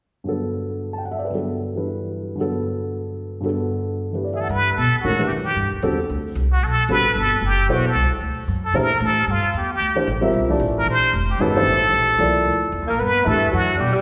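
A brilliant, plunger-muted trumpet with a wah-wah voice carries the melody of this hypnotic, open modal jazz excerpt, swinging at 226 BPM in G major and entering at 4.4 seconds over a dark baby grand piano whose intimate, short-sustained voicings carry audible action noise. A woody, thumpy upright bass on gut strings joins alongside the trumpet as the harmony moves from Gmaj9 to Bbmaj9 and back, and a mellow, distant alto saxophone with vibrato adds a second line from 12.9 seconds. The sound sits in the wet reverb of a church or concert hall.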